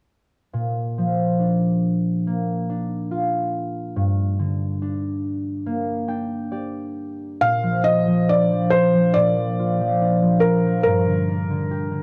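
Children's lullaby music with a tender, gentle, rubato feel: a mellow, thumb-plucked concert harp rings up front from 0.5 seconds, adding a fill before a soft, felt-muted upright piano enters at 7.4 seconds with an intimate melody and audible action noise, all in a dry, close 1970s-style studio sound with light reverb, cut from a longer piece.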